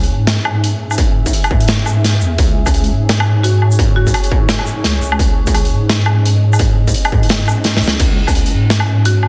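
A dense, heavily limited mix with light studio ambience carries this tense, cinematic fragment of half-time drum and bass, swung on the sixteenths. A big, bright-cymbaled rock kit with crash, hi-hat, shaker, snare and woodblock sits up front beside a distorted electronic kick that enters at 1.0 s, while a deep, chorused wobble bass anchors the low end beneath a moody, detuned ambient pad pumping in the background with sustained chords, with a drum fill at 7.6 s. A buzzing, woody marimba with dub echo adds a brief melodic figure on F#4 starting at 3.4 s.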